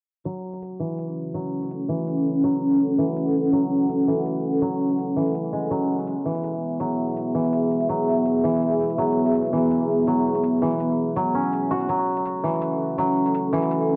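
Koto arpeggios and a background electronic hi-hat open this cinematic, spacious half-time drum and bass cut from a longer piece at 0.3 s. The koto sits up front, woody and played with fingerpicks, roughened by vintage 12-bit sampler grit and carried by a low-pass filter and dub echo. A dark analog pad joins at 1.3 s with deep, detuned sawtooth and triangle chords, reinforced by a sub octave, a slow attack, a long release and chorus, holding moody sustained harmony up front. The metallic, layered hats stay low in the mix, re-recorded in a small room and dulled by low-pass filtering. Filter sweeps run across the drums and koto throughout, while a moderate lush hall reverb with digital ambience gives the whole mix its sense of space as the harmony moves from F#m to E and back to F#m.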